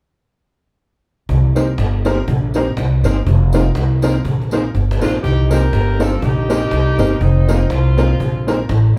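A woody, growly pizzicato upright bass sits up front in this energetic, mischievous ska excerpt at 122 BPM in C dorian, alternating Cm7 and F7sus4 with a light swing, as a snappy, distant cajon, a dark, fingered electric guitar with tremolo and tape echo tucked in the background, a detuned, jangly honky-tonk upright piano playing echoed stabs, and a faint, jingly tambourine fill out a live-in-one-room sound with a wet studio reverb, before a clear, loose horn section with light vibrato takes the melody at 5.0 seconds.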